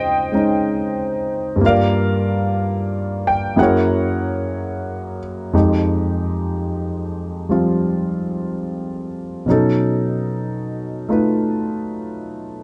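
A solo concert grand piano, intimate and up front with deep bass and audible action noise, plays a tender, romantic jazz ballad with a gentle swing, moving through lush extended chords such as Dbmaj9, Gb9 and Fm9 in a dry, closely miked sound for the whole 12.6 seconds of this cut from a longer piece.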